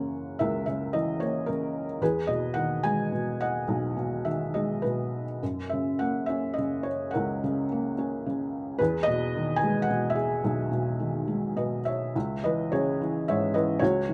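Warm and hopeful, this short passage, cut from a longer piece, is lyrical classical music for solo piano, unfolding in 3/4 with a freely breathing rubato. A felt-muted upright piano carries the whole performance alone, its tone soft and mellow, sitting up front in an intimate space touched by light reverb. The mechanism's action noise is clearly audible beneath the notes, adding a close, tactile character. The harmony drifts from F#7 to Emaj7, then F# and back to Emaj7, before a new section arrives at 12.2 seconds on C#m. Tuned slightly below standard pitch, to A4 = 436 Hz, the instrument spans from deep bass up into its upper register across the 14.1 seconds.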